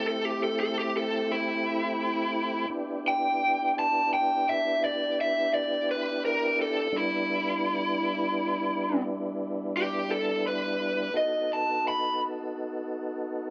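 A slow, brooding blues in a straight 12/8 of dotted beats, cut from a longer piece, with a smoky mood carried by a picked, overdriven electric lead guitar, warm and lo-fi from a small cranked amp, singing an up-front solo melody until it drops out at 12.2 seconds. Beneath it, a clear, lightly overdriven tonewheel organ holds sustained chords through to 13.5 seconds, its tone shaded by chorus vibrato and a stopped rotary speaker, moving from Am7 to Em7 and landing on B7 at 11.1 seconds. A moderate plate reverb with a long tail gives both parts a dim, late-night glow.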